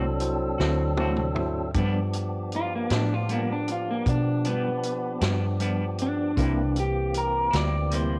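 Slow blues with a swaggering, rollicking 12/8 feel, cut from a longer piece. An electric guitar through a small old amp carries the melody up front, its dark, slightly broken-up tone wrapped in spring reverb, while a round, foam-muted fingered bass sits just as far forward beneath it. A fat tonewheel organ holds sustained chords with key click, light overdrive and a fast rotary speaker, and a vintage drum kit with a punchy kick and a rolled-off top comes in at 0.2 seconds. A tine electric piano, heard through its built-in speakers in the background, plays a fill alongside a drum fill before dropping out at 1.7 seconds, as the harmony moves from D7 to G7. From there a clean, picked electric guitar with harmonic tremolo takes a solo, the chords shifting to C7 at 6.4 seconds, inside a light overall reverb.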